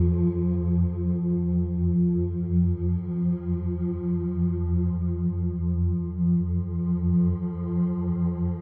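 Drenched in a cavernous cathedral reverb with a 5.3-second decay, this ominous ambient excerpt in free time is carried by a lone, up-front swarming drone of detuned sine voices in unison between F2 and F3, its granular, mellow tone sustained over slow attacks and long releases as a moving notch and built-in reverb and delay keep it tense and evolving, shifting into a new section at 5.7 seconds before the cut at 8.6 seconds.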